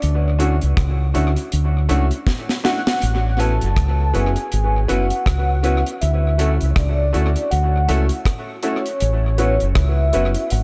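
Set in a small, intimate room, this romantic, sweet lovers rock reggae excerpt moves at an unhurried 80 BPM with a swung sixteenth-note feel, gliding between Dmaj7 and A69. A velvety, detuned synth lead carries the melody with chorus, tremolo and tape echo over a round, up-front fingered dub bass and a dry, acoustic drum kit with a high-tuned snare, tight kick, rim clicks and hi-hat, which plays a brief fill from 2.3 to 3.0 seconds. From 0.4 seconds a brilliant, slightly worn grand piano with short sustain adds accompaniment, while a dark, clean electric guitar sits in the background with echoed stabs.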